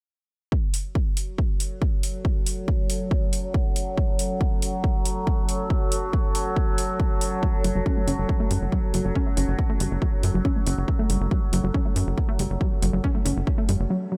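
A heavy, layered electronic kick drum opens this driving peak-time techno excerpt, joined moments later by metallic hi-hats that carry a small-room character and pump against the kick. An overtone-sweeping drone enters at 1.3 seconds, its resonant sawtooth and sine tones given chorus, phaser and built-in reverb, and soon a deep, moody ambient pad settles above it with detuned unison and a sub octave, both breathing with sidechain pumping. The mood is industrial and driving, held on a single minor chord throughout. At 7.4 seconds a warbling, dusty pluck riff arrives with lo-fi vintage grit from tube saturation, chorus and tape echo, and a tight, punchy sequencer bass follows at 7.6 seconds, sitting up front with the kick. The whole passage is one continuous section under light reverb, closing on a break at 13.9 seconds.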